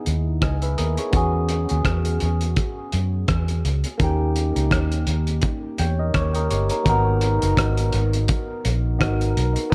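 A round, punchy, foam-muted electric bass sits up front in this smooth, longing lovers rock reggae excerpt in G# minor at 84 BPM with a swung 16th feel, joined by a barky tine electric piano through a combo amp with phaser and tape echo, and a muffled, lo-fi small-room drum kit of tight kick, hi-hat and rim click, over studio ambience as the chords move from C#m7 through E6 and D#7 to G#m7 at 6.9 seconds.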